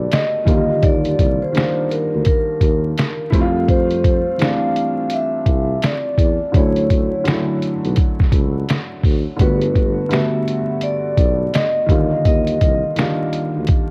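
A cosy, dreamy lo-fi hip hop excerpt at 84 BPM in 4/4, with a lazy swing on the sixteenths. A vibraphone played with soft mallets carries the melody, its metallic, ringing tone softened by slow motor vibrato, cassette tape colour and analog delay, and it drops out at 12.9 seconds. Beneath it, a dark upright piano sits up front with a woody, intimate, vintage sound and audible action noise, moving through lush chords from Ebmaj9 through Fmaj9, Dmaj9 and Gmaj9 and back to Ebmaj9. A mellow tuba holds the low end with jazz-style phrasing, vibrato and a smooth top, lightly thickened by tube saturation. The sampler-style drum kit is the loudest part, compressed, pitched down and muffled, with a thumpy kick, a medium-tuned snare, hi-hat and finger snaps. A small room reverb, the cassette home recording and vinyl crackle give the whole piece a homespun, cosy feel.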